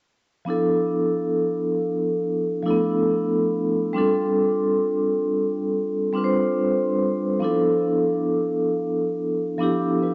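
A dreamy, reverb-soaked sound with a cassette-tape haze greets the ear, its top end rolled off so nothing rises above 7.8 kHz, and a moderate plate reverb lets each note hang in the air. This short hip hop cut, lifted from a longer piece, carries a mellow, cosy mood with a gentle swing on the sixteenths in 4/4. The only part is a vibraphone struck with soft mallets, sitting up front from 0.5 to 10.1 seconds as accompaniment and ranging from F3 to C5. Its tone is metallic and ringing yet airy, shimmering with a medium motor vibrato and softened further by tape coloring and a low-pass filter. The harmony moves through Dm69/F, then F69 at 4.0 seconds, and G13 at 7.4 seconds, giving the brief passage a lush, jazzy glow.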